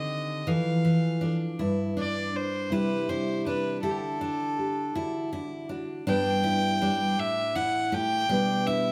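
A slow, straight 6/8 pulse at 54 BPM carries this nostalgic acoustic folk piece in G major, cut from a longer performance. A single bowed fiddle with a nasal, reedy gut-string tone sings the melody up front, while a thumb-plucked nylon-string guitar with fresh strings and a deep classical sound supplies the accompaniment. A full-bodied jumbo steel-string guitar picks arpeggios through changes such as Cadd9, Dsus4 and D, reaching G/B at 8.3 seconds, and a large studio reverb gives the trio a wet, roomy glow.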